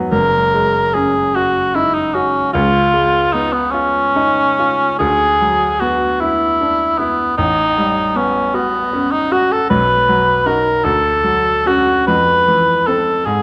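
Impressionist classical music for cor anglais and baby grand piano, this luminous, pastoral fragment drifts at 50 BPM in a rubato 6/8 with uneven beats. The warm cor anglais, up front, sings the melody with light vibrato in a classical style, while the clear, natural-sounding piano, with its short sustain, lays down accompaniment through colorful chords from F#69 and C#9 to Dmaj7 and a closing Fmaj7, all set in a moderate recital-hall reverb with a dark production.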